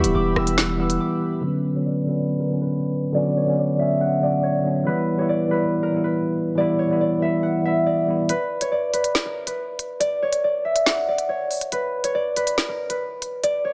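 Lightly reverberant and close, this tense, ominous drill piece at 140 BPM in a half-time feel opens on Em with a punchy, heavy 808-style bass and a detuned sawtooth pad with chorus beneath a ringing, thumb-plucked concert harp melody softened by a low-pass filter and tape echo, alongside a worn, slightly out-of-tune tine electric piano, then thins to harp and piano over a filter sweep and chords moving from Bmadd9 back to Em from 1.4 s, before the electronic drill kit returns at 8.3 s with crisp hi-hats, rim clicks and a woody snare as the piano stops and the chords fall away.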